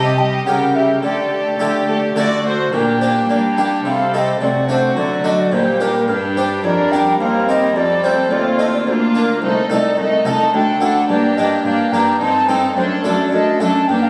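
A baroque flute with a wooden, airy, straight tone and soft attack opens this stormy, dramatic excerpt of a baroque-style concerto movement in G minor, carrying the melody across a range of Bb4 to Bb5 over a chamber string ensemble and harpsichord from the first second. At 107 BPM in a straight 3/4, the piece moves through tense harmony, passing a C#dim7 and a Dsus4 resolving to D before turning through Gm, Cm, F and Bb and arriving on D/F# near 12.8 seconds. One violin section also carries the melody in a lower range with gut-string, period-style bowing and light vibrato, while a second violin section sits in the background on a supporting line. A nasal, dark viola section fills the middle in accompaniment, and a full, Italian-style harpsichord with two sets of strings plucks its accompaniment across a broad span beneath it. A cello section with a smooth top anchors the bass until 14.0 seconds, all heard through a wet recital-hall reverb of 1.6 seconds, captured on a phone in the room with added studio reverb and compression.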